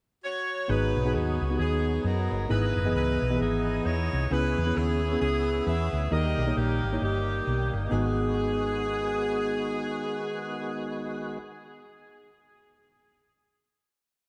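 A bright, close-miked saxophone section carries a motif-based melody from 0.2 seconds in this short, solemn and fervent gospel piece with a swung feel, its light vibrato trailed by tape echo. A barky, slightly out-of-tune tine electric piano, also fed through tape echo, pushes close-voiced chords with grace notes. A lightly overdriven tonewheel organ holds drop2 chords through a slow rotary speaker, while a dark, round hollow-body bass walks and runs up front with chromatic approach notes. After a brief pickup, the breakdown moves through G#m7, Emaj7, C#m7 and D# before settling on a final G#m7 chord at 7.9 seconds, the mix steeped in echo-chamber reverb with a rolled-off top.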